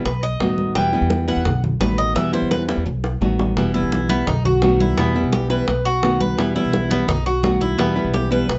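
Latin Cuban son in a guajira vein, this nostalgic, warm snippet at 171 BPM in E harmonic minor features a metallic, double-strung Cuban tres up front with picked arpeggios and an opening solo that runs until 3.6 seconds, over a full-bodied, fingerpicked nylon-string guitar with audible finger squeak, a woody, thumpy pizzicato upright bass, tight, high-tuned bongos, and thick-skinned, saturated congas set in the background, while a drum fill arrives at 2.7 seconds, the chords alternate between B7 and Em throughout, and moderate studio reverb sits over a rolled-off treble.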